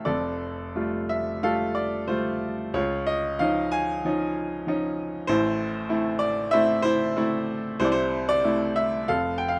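A bright, woody upright piano plays alone from the first moment, setting a sunny, lyrical classical mood in F major at a flexible, rubato pace of roughly 85-101 BPM in 4/4. Across this short passage cut from a longer piece, the harmony drifts from Fadd9 to Dbadd9, then through A minor and C6 before settling on F at 9.1 seconds. Close, detailed miking keeps the smooth, vintage piano up front, with a light reverb around it.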